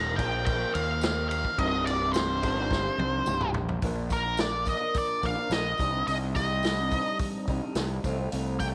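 A straight 4/4 pulse at 107 BPM drives this dark, trippy psychedelic rock excerpt in C minor, where an up-front octave-fuzz lead guitar carries the melody through wah, distortion and slapback echo over a twangy, slightly broken-up riff guitar from a small old amp treated with phaser. Beneath them a round, overdriven fingered bass anchors the low end, a vintage acoustic kit with punchy kick and rolled-off dark cymbals comes in at 0.2 seconds and plays a fill from 2.7 to 3.8 seconds, and a jingly tambourine sits in the background from 1.0 seconds. The chords move from Ebsus2 and Cm into a second section on Bb, returning to Cm before closing on F/C, all within a light studio reverb.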